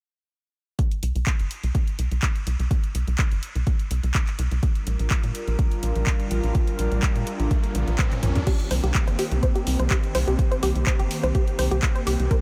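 A straight 4/4 groove at 125 BPM drives this emotional, bittersweet progressive house excerpt, with a deep, overdriven electronic kick sitting up front beside a house kit of handclaps, warm hats, toms and crash cymbal, whose hats, toms and cymbals pump against the sidechain, and a tight, punchy sawtooth sequencer bass entering at 1.0 seconds under a filter sweep. An airy, breathy pad with chorus and phaser arrives at 4.9 seconds, a very quiet riser and a drum fill build toward the change at 8.5 seconds, where the harmony moves to Cm7. From there a round, bright analog pluck spins arpeggios through chorus and analog delay under its own filter sweep, all set in light digital reverb.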